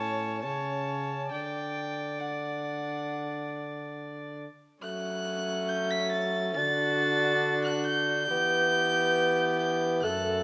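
A close, nasal violin with an airy bow and gut-string tone carries the melody of this courtly, rustic renaissance-style consort dance in straight 4/4, joined from the start by a rich, reedy viola second line, a warm bassoon accompaniment with light vibrato and a mellow, soft-attack trombone bass, all set in a wet stone room in this brief cut from a longer piece.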